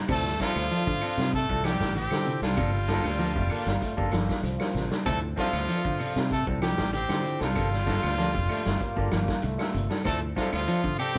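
A straight 4/4 groove at 96 BPM from a punchy vintage drum kit, round fingered electric bass and very quiet woody claves drives this intense afrobeat piece in D minor, with a bright trumpet melody full of scooped notes up front over a raspy tenor saxophone second line, a smooth bass trombone joining from 3.2 to 9.9 seconds, clean electric guitar stabs with spring reverb, dark fingered guitar arpeggios and a barky, lightly overdriven electric piano, the band playing live together in one room.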